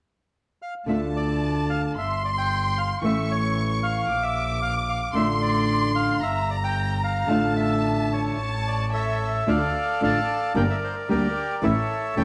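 A reedy bandoneon carries the melody up front from 0.6 s in this sultry, passionate tango excerpt in D minor, moving at 112 BPM in 4/4 with a rubato feel. A lush bowed violin section with vibrato adds a second line until 9.5 s, while a thumb-plucked nylon-string guitar, finger squeaks audible, gives accompaniment and a clear, focused double bass, bowed by one player, anchors the low end. Wet spring reverb and a small room surround the parts as the harmony moves from Dm through Bb and Gm toward a closing A chord.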